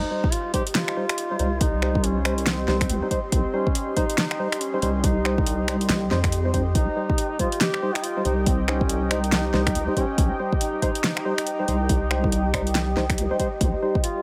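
The recording is dry, with little reverb, and it sounds like a fragment lifted from a longer piece. This is meditative, heavy deep dubstep at 140 BPM in 4/4, felt at half-time with a 60% swing on the sixteenths. It sits in C phrygian over a C minor chord, tuned to A4 = 437 Hz. A duduk carries the melody from the very start, playing in a folk style between C4 and G4 with vibrato; it sounds distant and roomy, and trails a dub echo. Alongside it, a moody analog pad holds full-bodied, detuned chords with a sub octave and chorus. A hollow, nasal organ stab punctuates the track with dub echo and a moving notch. An up-front electronic kick, tape-warm and deep, pairs with a deep house kit of fat snare, metallic hi-hats and finger snaps. At 1.4 s a soft wobbling bass enters between C2 and F2, saturated, compressed and thickened with chorus.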